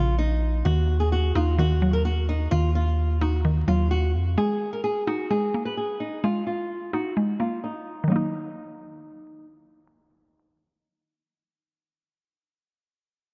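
A dark, warm production with vinyl crackle, a low-pass filter and a light small-room reverb sets an eerie mood for this fragment of a longer hip hop and trap piece in Eb minor, moving at 129 BPM in a half-time 4/4 feel. Up front, an acoustic flamenco guitar carries the melody with a fingerpicked, warm tone, playing until 9.5 seconds. Beneath it, a woody, percussive FM synth pluck with a mallet-like attack, a short decay, a noise layer and a shimmer of chorus provides the accompaniment and continues to the end at 12.3 seconds. A deep, mellow 808-style bass with a sine-like body, fast attack and long decay sits prominently in the low end, then drops out at 4.4 seconds. The harmony moves from Bbm to Ebm and Absus2, returning to Ebm as a second section begins at 8.1 seconds.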